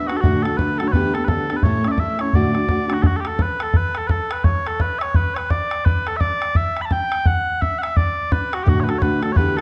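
Lively and bright, this swung Celtic folk hornpipe puts sweet, mellow small bagpipes with vibrato up front over a tight, damped bodhran, while a dark fingerpicked steel-string acoustic guitar, finger squeaks audible, accompanies until 3.0 seconds and returns at 8.7 seconds, heard in a moderate recital-hall reverb.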